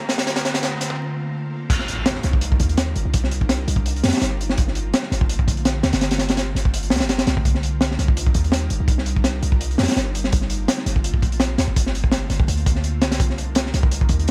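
Nostalgic and raw, this drum and bass excerpt at 167 BPM in C dorian opens with a brief build-up. A riser and impact sit in the background, a faint, breathy wind-like texture holds a note for the first second, and a deep, boomy 808-style bass runs throughout as the harmony alternates between Gm11 and Cm11. A crunchy, saturated breakbeat kit sits up front from 0.1 seconds, with a punchy kick, high-tuned snare and dark cymbals in a small room, and at 1.7 seconds the drop lands, all under a bed of vinyl crackle.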